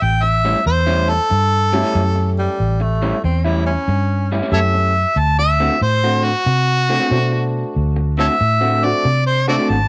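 An overdriven harmonica with scooped notes, vibrato and tongue slaps leads from the first moment over a dark, round, punchy muted bass in this swaggering, gritty electric blues shuffle at 93 BPM, joined by a slightly broken-up, lo-fi picked guitar riff; a woody upright piano with long sustain enters at 1.7 seconds and a soft-attack tenor saxophone adds a brief second line from 2.4 to 4.4 seconds, all under light reverb as the harmony moves from A7 to D7 in this excerpt from a longer piece.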